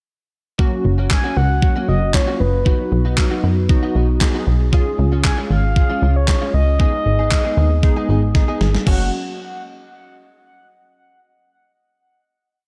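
A summery, upbeat dance-pop piece at 116 BPM in F# major, built on a single verse that moves through F#, B, C# and G#m before resolving on a held F# chord at 8.9 seconds. A clean 12-bit drum machine drives a four-on-the-floor beat with a thumpy kick and a medium-tuned snare layered with handclaps, overdriven and re-recorded in a large room, sitting up front and capped by a drum fill just before the close. Beneath it, a plucky analog bass plays punchy, funky off-beat lines with a fast attack and sidechain pumping, while a glassy wavetable pluck adds crystalline, detuned syncopated chord stabs in close voicing, also pumping with the sidechain. In the background, a bright, direct-recorded clean electric guitar picks a choppy funk-style riff through analog chorus. Entering at 1.1 seconds, a mellow horn-like synth lead carries a round, vintage, motif-based melody with soft attack, vibrato, chorus and tape echo, all set in a dark, digital ambience.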